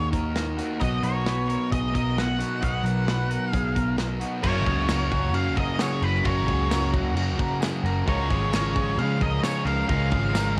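Wistful and hazy, this short cut from a longer shoegaze and dream pop piece rolls along at 132 BPM in F# major, with an octave-fuzz lead guitar carrying the melody over twangy, chorus-soaked arpeggios from a guitar through a small old amp, all under a soft wash of cassette tape and analog delay. Beneath them, a dark, thick fuzz riff and a crunchy overdriven riff with reverse reverb sit in the background, while a round, foam-muted picked bass and a loose indie drum kit with dark cymbals and a punchy kick hold the ground in a small room. At 4.4 seconds the chords shift from D#m and Bmaj7 to F#add9, where a very quiet, bright double-tracked semi-hollow guitar joins, followed at 4.9 seconds by a jingly, close and dry tambourine.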